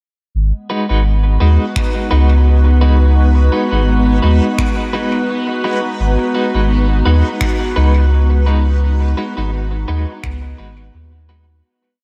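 A deep, round sine sub bass with tube saturation sits up front in this hazy, spacious ambient dub piece at 85 BPM in G# minor, carrying a dub-style line beneath a calm, organ-like pad of slowly shifting chords, clean picked electric guitar playing off-beat chords with tremolo and dub echo, a soft, overdriven slow kick, sparse finger snaps with dub echo, and a reversed, detuned granular texture holding a high note in the background, in a dreamy, reverb-soaked mix that fades out from 7.9 to 11.6 seconds.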